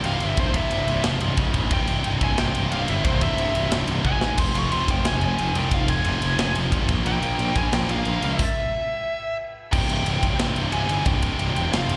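A dark, relentless heavy metal excerpt opens with the full band together in a half-time feel: a warm, distorted lead guitar carries the high melody over two high-gain rhythm guitars, one heavy and one scooped, that churn out the low riff with a slapback echo. A growly, punchy fuzz bass sits up front beside a polished drum kit with a tight kick and bright cymbals, and a drum fill at 4.0 seconds leads into a full stop at 8.4 seconds before the band crashes back in at 9.7 seconds. The sound is that of a live gig heard through the venue's PA, with an airy, big-room quality to the drums.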